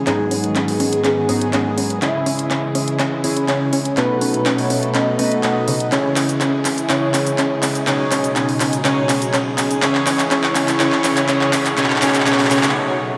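An overdriven, layered house drum kit of handclaps, hi-hat and shaker sits up front in this bittersweet, emotional progressive house excerpt, playing a fill through a build-up that breaks at 12.8 seconds. A thick, detuned unison lead carries the melody with lush chorus and delay, while a glossy chorused polysynth punches retro stabs and a round analog pluck arpeggiates in the background, with filter sweeps on both the lead and the pluck. Beneath them a dark chamber string section holds smooth, bowed chords roughened by vintage 12-bit sampler grit and a low-pass filter, and the dreamy mix is soaked in plate reverb over a cycle of G#m7, C#m and B7.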